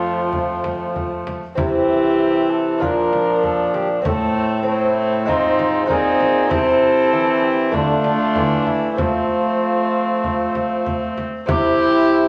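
This is a classical, Renaissance-style consort dance in C mixolydian, festive and courtly, moving at 97 BPM in a straight 4/4, and cut from a longer piece. A mellow cornet carries the melody with light vibrato and a soft attack, sounding distant and roomy, while a bowed viola with a nasal, reedy gut-string tone and smooth top plays a second line alongside it. A second viola sits up front in the accompaniment, close and warm with an airy bow, joined by a delicate fingerpicked lute whose doubled gut strings sit in the background. A clear, punchy bassoon anchors the bass, and a deep, large frame drum played with soft hands enters at 0.3 s and stops at 11.8 s, its sound close and dry. The harmony passes through F, C, Bb, Am, a striking Ab, then back through C and Dm to F before settling on C, all set in a stone room with a 1.2-second reverb.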